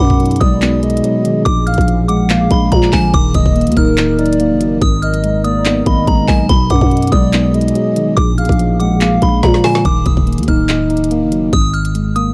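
Trap-leaning hip hop in a half-time feel, this eerie, melancholic fragment is cut from a longer piece and moves through a minor-key progression under a digital ambience. A delicate, tinkling FM tine bell carries the melody up high, its bright tone treated with chorus, phaser, filtering and digital delay, while a hollow, woody clarinet-like synth lead with vibrato adds a soft second line until 9.4 seconds. Beneath them a mellow tine electric piano supplies the accompaniment, heard as if through built-in speakers, and a deep, moody detuned pad holds sustained chords in the background until 9.8 seconds. A growling, buzzy 808-style bass decays under each note, and an up-front trap kit with a knocking kick, woody snare, crisp hi-hats and handclaps drives the groove. A drum fill at 9.4 seconds leads into a short closing passage where the bell, piano, bass and drums carry on.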